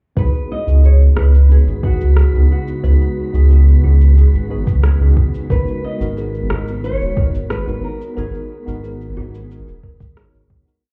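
A soft, overdriven electronic kick sits up front with a light lounge beat of overdriven electronic cabasa and rim click, setting a straight, unhurried 4/4 groove for this short, wistful sunset chillout piece. Beneath it a round sine sub bass, also up front, plays a dotted rhythm, while a mellow tine electric piano, clean and heard through its built-in speakers, adds dotted-rhythm chords in rootless voicings, dulled by a low-pass filter and digital delay. A thumb-plucked nylon-string guitar carries the melody in small call phrases, its finger squeaks audible under tape echo, and a woody, hollow kalimba sits in the background with an eight-step arpeggiated sequence through digital delay. From about 1.0 seconds a breathy, wind-like noise texture drifts in behind them, holding a high note in its own reverb, joined at 1.1 seconds by an ethereal, detuned pad of chorused sustained chords. The harmony moves from C#7sus4 to G#m9 at 5.5 seconds, the mix sounds muffled as if heard through a wall in a club-like reverb, and a fade-out begins at 7.3 seconds and runs to the end.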